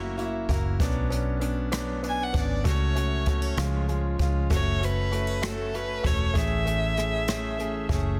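Dramatic and melancholic, this excerpt from a six-eight pop ballad in F# minor moves at 65 BPM in a straight 6/8 feel, its harmony passing through F#7, Bmadd9, F#m/C# and C# before settling on F#m and Amaj7. A concert grand piano carries the accompaniment with an intimate, polished tone, deep bass, long sustain and audible action noise. A picked steel-string acoustic guitar sits in the background with arpeggios, its finger squeaks present. A dark, round, foam-muted electric bass stands up front, joined from 0.2 seconds by a brushed jazz kit with a boomy kick, hi-hat and rim click, and soft clipping on the snare. At 2.1 seconds a single bowed violin enters with the melody, focused and slightly boxy with vibrato and a touch of delay. Light reverb and small-room ambience surround the parts, and the master is dense and heavily limited.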